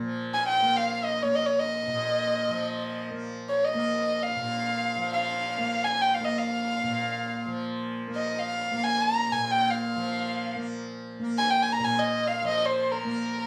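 A small room with moderate studio reverb frames this short excerpt from a longer piece of Hindustani classical music in raga Bhimpalasi, and the mood is longing and introspective. A softly plucked tanpura opens at 0.0 seconds, its buzzing, shimmering drone sitting up front with a warm acoustic glow in the low register. At 0.3 seconds a single bowed violin enters to carry the melody, pitched well above the drone. Its tone is dark and boxy, played sul tasto with an airy bow, a soft attack and light vibrato. Placed close and up front over the tanpura, the violin sounds intimate, and both parts continue together until the excerpt ends at 13.5 seconds.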